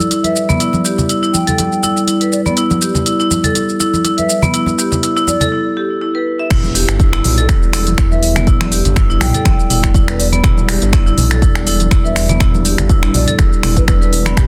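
An excerpt of spiritual afro house at 122 BPM in E minor opens on an Em7 chord from a dark, detuned analog pad with chorus and sidechain pumping, alongside bright, hard-mallet marimba arpeggios through delay, a mellow, hollow concert flute melody with vibrato, thick-skinned congas and a smooth-hatted afro-pop kit of snaps, shaker, toms and crash filling the build-up, before a short break gives way at 6.5 seconds to a drop where a punchy, tape-warm electronic kick and a deep, rumbling detuned saw bass arrive under a dense, heavily limited master with light reverb.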